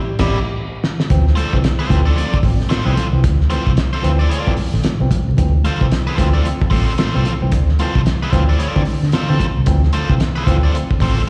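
A thuddy, cloth-damped drum fill and a band accent open this driving, cool funk excerpt over an Am7 chord, before the groove settles onto Dm7 at 1.1 s. The muffled kit sits up front with a fat snare, tight kick and dark cymbals, and its saturated, lo-fi small-room sound gives it a gritty edge. A vintage fingered electric bass sits prominently beneath, foam-muted and round, while a bright, biting guitar plays picked, overdriven accompaniment with slapback echo. A barky tine electric piano, distorted through a combo amp, adds low stabs with its own slapback echo, and quiet, high-tuned congas played with soft hands join at 1.1 s. The swung sixteenth feel carries it all, heard as a live gig through the venue's PA with recital hall reverb, light studio ambience and vinyl crackle.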